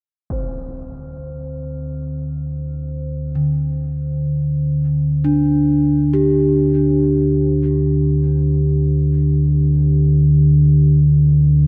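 The sound is cavernous and ominous, set in a huge ambient reverb that gives this dark ambient drone a vast, shadowy depth as it unfolds in free time. A deep, rumbling drone sits up front from 0.9 seconds, its warbling, wave-folded tone swelling from a slow attack and sustaining with a long release, thickened by lush chorus and its own built-in reverb. A huge, bright impact opens the piece at 0.3 seconds, muffled by a low-pass filter, while a bronze singing bowl fades in beneath, mellow and meditative with slow beating in a boxy small room. From 3.4 seconds a gamelan-type bronze metallophone plays arpeggios, close-miked and full, struck with padded disc mallets and trailed by a diffuse ambient delay. A filter sweep moves across the drone over a D7sus4 harmony, and reversed cymbals fade in alongside the impacts, deepening the sense of a vast, gathering darkness in this section cut from a longer piece.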